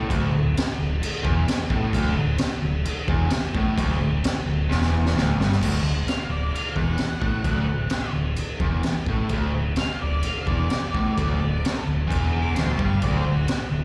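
A dark, double-tracked overdriven guitar riff with slapback echo and a punchy, amped fingered bass open this raw, swaggering garage rock excerpt in D major at 130 BPM, joined almost at once by a gritty drum kit with a boomy kick and high-tuned snare that plays a fill from 4.7 seconds, before an octave-fuzz lead guitar solo enters at 6.1 seconds with a distorted, picked tone and slapback echo, the whole band heard as a live gig through the venue's PA in recital hall reverb.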